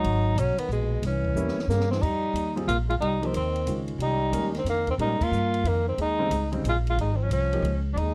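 Searching and intense, this modal jazz excerpt in F minor swings along at 182 BPM in a brisk 3/4, the sus and altered dominant harmonies keeping it restless. A breathy tenor saxophone carries the melody up front, its subtone, scooped notes and vibrato wrapped in plate reverb for a whispered, intimate, vintage tone. Beneath it a breathy trombone plays a softer second line with light vibrato and a mellow, hushed attack. A woody, thumpy upright bass with gut strings sits close, while a compact cocktail drum kit adds dark cymbals, a high-tuned snare and a punchy kick from a tight booth, with a drum fill between 1.4 and 2.0 seconds and a band accent at 5.2 seconds. A concert grand piano joins at 1.4 seconds as accompaniment, its deep bass and audible action noise adding a natural intimacy, before dropping out at 7.6 seconds under a dark production with light reverb.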